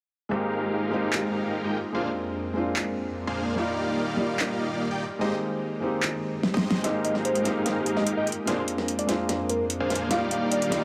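Set in a light reverb, this bittersweet, emotional future bass piece at 147 BPM in a half-time F dorian feel moves through Fm11, Bb9/F, Ebmaj9 and Abmaj7 as a mellow felt-muted upright piano with 12-bit sampler grit and tape echo, a huge detuned supersaw riff under a low-pass filter, and a breathy chorused pad carry the harmony, while an overdriven pop drum kit with a fat snare, metallic hats and handclaps enters at 1.1 s, fills at 6.4 s and pushes a build-up from 6.8 s, where a round, octave-layered synth lead with digital delay takes the melody.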